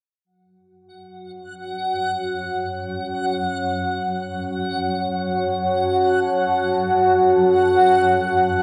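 A deep, moody pad of detuned sawtooth and sine voices with a sub octave and chorus sits up front in this brief cut from a longer dark ambient drone piece, holding a single sustained F#m chord from 1.6 seconds. Beneath it a swarming, tense drone of granular, detuned sine tones rises in from 1.3 seconds, while a reversed, dreamy triangle texture swells up high from 1.5 seconds. The whole thing drifts in a cavernous, unsettling haze of huge reverb and worn, warbling cassette tape that bends the pitch.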